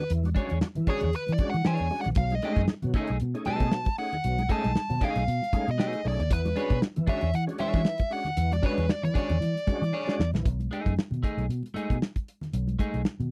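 A nasal, overdriven lead guitar with a parked wah solos from the start over gritty tonewheel organ stabs, whose chorus vibrato, key click and slow rotary speaker give them a thick churn, in a strutting funk groove at 116 BPM with a light 16th-note swing, moving from E13 to B13 and back. Underneath, a dark, foam-muted fingered bass and a damped 70s kit with a tight kick and medium-tuned snare sit up front, joined by a twangy, slightly broken-up rhythm guitar and very quiet, high-tuned congas. A drum fill at 9.9 seconds leads into a B6 chord at 10.4 seconds, where the solo and organ drop away and the rhythm section carries on in a dry, close 1970s-style studio sound.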